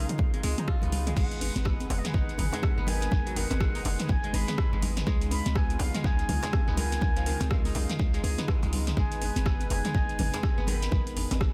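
A steady 123 BPM groove in 4/4 with a 60% swing on the sixteenths drives this earthy, warm afro house clip in G# dorian, cut from a longer piece. A deep house drum kit of metallic hi-hats, rim clicks, toms and crash cymbal enters at 0.1 seconds, followed at 0.2 seconds by an overdriven electronic kick drum with a deep, layered punch, both dressed in studio reverb, while very quiet congas played with soft hands sit in a small room. From 1.2 seconds a close, dry djembe and a grainy shekere tucked in the background join the percussion. Beneath them a boomy 808-style bass with a sine body, noise layer and fast, decaying attack pumps against the kick, as does a smooth, detuned sawtooth pad that holds chorused chords in the background. A bright, crisp fingerpicked kora rings out arpeggios through delay and sidechain pumping, and an airy, distant concert flute with a straight tone and soft attack carries the melody between D#5 and B5, echoed by delay. 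The harmony moves between C#add9 and G#m, and the dense, heavily limited master keeps a small room ambience around it all.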